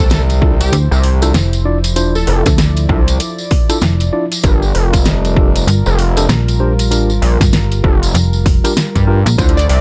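Glitch hop with a gritty, swaggering mood, this short cut from a longer piece rides a swung sixteenth-note feel over a Dm9 that moves to Gm7. Two up-front basses anchor the low end: a gritty driven synth bass, aggressive and nasal with distortion and overdrive, and a snappy, slap-like FM bass with a metallic attack that enters at 0.7 seconds. A punchy, layered electronic kick arrives at 0.4 seconds alongside a pop drum kit with a fat snare, rim clicks and metallic hats, while a jingly, saturated tambourine adds shimmer. A mellow, clean tine electric piano plays stabs with sidechain pumping and tape echo, and a smooth analog pad holds sustained chords in the background, treated with chorus and its own pumping. A catchy, detuned plucky unison lead carries the melody through tape echo at the very start, returning only briefly at the close, and a barely audible electronic impact sits under the first two seconds. 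The mix is dry, with little reverb.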